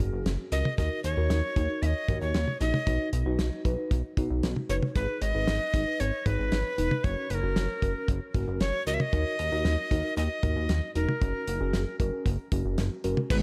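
A straight 4/4 groove from a damped 70s drum kit, with a fat snare, tight kick and rolled-off top, drives this cool, nocturnal synth-pop excerpt alongside a glossy, chorused synth bass with a plucky filtered attack. A mellow tine electric piano, clean through its built-in speakers and treated with phaser and analog delay, carries the chords beneath a breathy, bright alto recorder that leads from 0.5 s with chiff, vibrato, an unsteady tone and close-miked intimacy. A lush string machine appears only at 13.3 s, just as the clip ends, and the mix sits in a light, small-room ambience heavy with echo.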